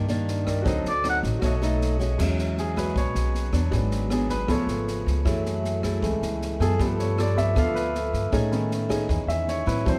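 Sophisticated and romantic, this brief bossa nova fragment opens on a boxy, fingerpicked nylon-string guitar and a woody, thumpy pizzicato upright bass, over which a clear, lightly vibrato oboe steps up front for a classical-style phrase between 0.9 and 1.2 seconds. From 2.2 seconds the baby grand piano takes the solo, its natural, long-sustaining tone sitting forward as the harmony moves through rich extended chords. A polished, airy big-band drum kit with a hall sound, dark cymbals, a medium-tuned snare, rim clicks and a punchy kick plays beneath, and light reverb rounds out the mix.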